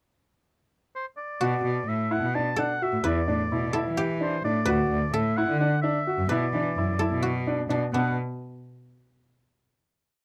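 A warm, lightly vibrato oboe sings a motif-based solo melody up front from 1.0 s in this hypnotic, urgent chamber piece in 7/8, joined at 1.4 s by a woody, fingerpicked koto counter-melody, a clear baby grand piano ostinato of arpeggios, and a focused, close bowed cello playing a syncopated bass riff, all in a dark production with light reverb that settles on a final chord at 7.9 s.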